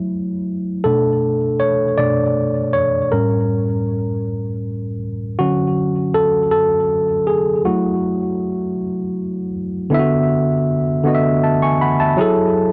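In a slow, straight 6/8 at 53 BPM counted in dotted quarters, this yearning, late-night R&B fragment from a longer piece features a lone worn, slightly out-of-tune tine electric piano, played up front through a combo amp with tape echo and tuned to A4 = 438 Hz, as it drifts through F#m7, Bm7, A7b9 and Dmaj7 before shifting at 9.9 seconds to D69 and settling on F#m9, all within a dry, gritty cassette recording marked by transformer saturation and a light reverb.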